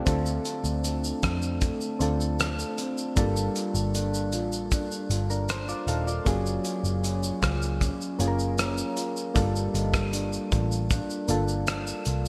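The soft, electric-piano-like synth keys sit up front with a round, gentle, full-bodied tone, a fast attack and a decaying, chorused warble that gives this short excerpt from a longer piece its dreamy glow. This is sunny, unhurried indie and bedroom pop at 78 BPM in a straight 4/4, moving through Dm7, Gm7, Gbmaj7 and back to Gm7. An electric guitar through a small old amp plays alongside the keys, slightly broken-up and fingered, with subtle chorus and a warbly pitch drift. Underneath, a vintage muted picked electric bass enters at 0.1 s with a dark, round, foam-muted sound. A cloth-damped, thuddy acoustic drum kit also enters at 0.1 s, placed up front with a tight kick, hi-hat, rim click and shaker, its rolled-off top treated with gated reverb. The excerpt has a bright 1980s-style digital production and a moderately lush hall reverb.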